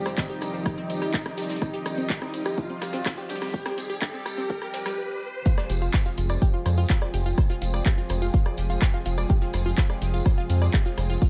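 A punchy, tape-warm electronic kick drives a straight 4/4 pulse in this dark, cinematic melodic techno cut from a longer piece, with house drum kit handclaps, hi-hat and rim clicks, a very quiet brushed kit, and a distant, jingly tambourine, while a fat, vibrato-laden analog lead sings until 5.0 seconds over a lush detuned unison pad, a nostalgic, lo-fi warbling pad and a detuned pluck arpeggio through tape echo, all pumping to the kick as a background riser builds to the drop at 5.5 seconds and a round, deep analog bass enters up front at 5.7 seconds.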